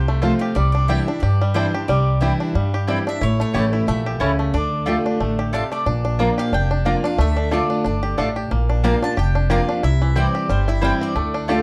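A growly, up-front upright bass anchors this rustic, driving bluegrass excerpt at 181 BPM in a swung 4/4. Above it, a bright, woody mandolin carries the melody in a plate reverb, while a second mandolin adds picked stabs from 0.2 s, a fresh-stringed dreadnought guitar supplies bright accompaniment, and a twangy, percussive banjo rolls out arpeggios played with fingerpicks. The harmony moves from F through Cadd9, A and Dm, then shifts to Bb, Dm and C at 5.9 s, all set in a dark production with light reverb.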